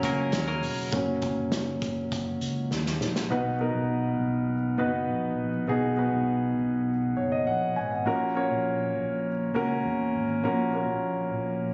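A straight 4/4 pulse at 101 BPM in B major carries this uplifting piano-driven pop excerpt, which opens on F# with a bright, twangy clean electric guitar riff, up front and dressed in spring reverb, that stops at 0.9 seconds. A clear, polished baby grand piano with long sustain holds the foreground throughout and takes a solo from that point, while a dark, round fretless bass anchors the low end and a loose indie drum kit with a punchy kick and medium-tuned snare plays until its fill closes at 3.3 seconds. The harmony moves to B and back to F#, and the phone-in-the-room capture gives the whole a moderately reverberant, muffled top end.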